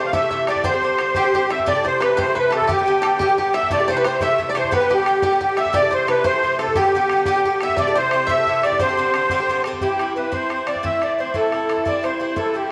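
A wet echo-chamber reverb with small-room ambience wraps this bright, lively Celtic jig in C major, moving at 118 BPM in a straight 6/8 over chords that shift between Am7, G and Csus2. A reedy, shimmering musette accordion carries the melody up front, while a twangy fingerpicked banjo plays a second line in the background until 9.6 seconds, and a picked Irish bouzouki with metallic double strings supplies the accompaniment. A boomy, saturated bodhran keeps the percussion going beneath them, and the music is cut from a longer piece as it reaches a new section at 9.8 seconds.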